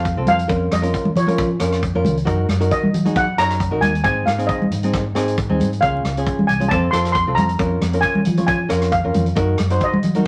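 A calypso groove at 135 BPM in 4/4 swings its sixteenths lightly, giving this short, festive and carefree excerpt a relaxed bounce. Up front, a metallic, shimmering lead steel pan carries the melody, struck with medium rubber sticks and heard in a boxy small room. A dark, fingerpicked flamenco guitar supplies the accompaniment beneath it, while a growly, amped fingered electric bass anchors the low end. A swinging big-band drum kit joins at 0.1 seconds with hi-hat, a punchy kick and rim clicks, and bright, medium-tuned congas played with soft hands enter at 0.3 seconds, sounding close and dry. The harmony moves through minor chords such as Bbm/F and Ebm/Gb alongside Ab, Db and F, all set in moderate studio reverb with a layer of vinyl crackle over the top.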